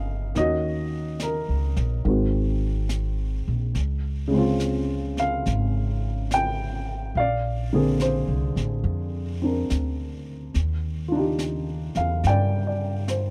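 A dark, mellow upright piano and a thumpy, gut-string upright bass played pizzicato open this intimate, melancholic jazz ballad at 71 BPM with a swung feel, joined at 0.4 seconds by a softly mixed brushed drum kit with a high-tuned snare and hi-hat, as the piano and bass sit up front in a dry, close 1970s-style studio sound over chords moving from Ebm7 through Ab7 and Dbmaj7 to Bb9 and Ebmaj9.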